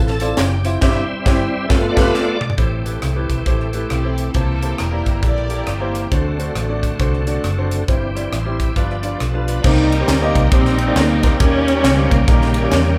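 A bright, shouting tonewheel organ with slow rotary speaker and chorus vibrato opens with a short solo over clear, long-sustaining piano and a dark, foam-muted electric bass, setting up a jubilant, soulful uptempo gospel piece at 136 BPM in C major with a swung 4/4 feel, while a very quiet burst of tambourine and handclaps sounds briefly at the start and the band hits accents capped by a drum fill. The crisp, airy fusion kit sits up front with a high-tuned snare and tight kick, and a lush, bowed string section carries the melody from 3.9 to 6.1 seconds and again from 9.6 seconds to the end, as the harmony moves through Cm7 and Eb7. The band plays live together in one room with light reverb.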